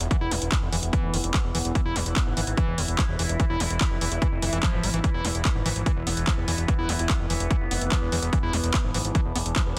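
A dense, heavily limited mix with light digital ambience carries this driving, psychedelic trance excerpt at 146 BPM in E5, built on an overdriven, up-front electronic kick and an overdriven techno kit of handclaps and hi-hat, a fat, detuned analog bass, a squelchy acid riff with delay sitting in the background, a very quiet wobbling vowel-sweep bass line, a phased drone of moving overtones pumping under the sidechain, and a deep, moody ambient pad that enters at 0.4 s.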